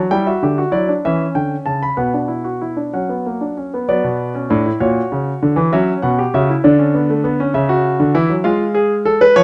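In a straight 6/8 at 65 BPM counted in dotted quarters, this solemn, contemplative passage from a longer baroque-style three-part fugue features a solo concert grand piano tuned to A4 = 438 Hz, up front with a deep bass and short sustain across a range from A2 to B5, its harmony moving through chords such as C#dim, F#sus4/B, Bm and G#m6, with a new section arriving at 3.9 seconds, all set in a moderate stone-room reverb.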